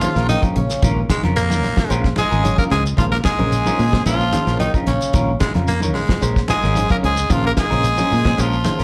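Opening at once on a sustained Bbm9 groove, this intense, funky afrobeat excerpt at 111 BPM in Bb minor puts a gritty, scooped tenor saxophone up front on the melody over a distant, bright trombone line and a worn, slightly out-of-tune reed electric piano in the background, all three carrying slapback echo. A round, foam-muted fingered bass and a dry, damped 70s drum kit with fat snare and tight kick anchor the groove, while a twangy, barely broken-up guitar plays very quiet arpeggios amid hard-handed vintage congas and a grainy shekere. A dark, clean guitar adds phased stabs from 0.2 seconds, and a punchy, raspy baritone saxophone cuts in briefly at 1.1 and 5.4 seconds, the whole thing sounding like a live gig heard through the venue's PA with club reverb.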